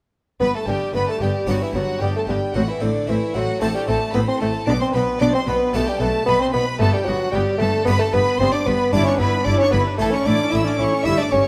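A mellow, up-front solo bassoon carries the melody from 0.4 seconds in this lively, brilliant baroque-style concerto movement in G major at 113 BPM, alongside bowed violin sections on a high line and a second line, a bright plucked harpsichord and lush violas in the background, and cellos and double basses holding the bass, all in a concert hall's moderate reverb as the harmony moves from G through D7/A and Em7/G to end on A at 10.0 seconds, in a passage cut from a longer piece.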